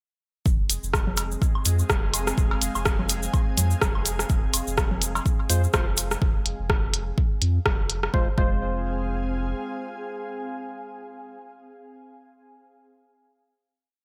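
A swung four-on-the-floor kick drives this cool, quirky minimal techno piece, with clicky closed hats and rim clicks in gated reverb, close, grainy cabasa sixteenths, and overdriven woodblock, low conga and cowbell blips in cross rhythm through digital delay, all under a thick, saturated sub bass riff that pumps with the sidechain. Above them an ethereal, airy pad with ensemble chorus slowly shifts chords while a faint, detuned gated texture pulses on a held high note in the background. From 5.5 seconds, sparse, hollow organ-like chord stabs echo through chorus and delay, and as the drop gives way to the final chord at 8.1 seconds, the pad and stabs ring out in a bright, 1980s-style digital mix with light reverb.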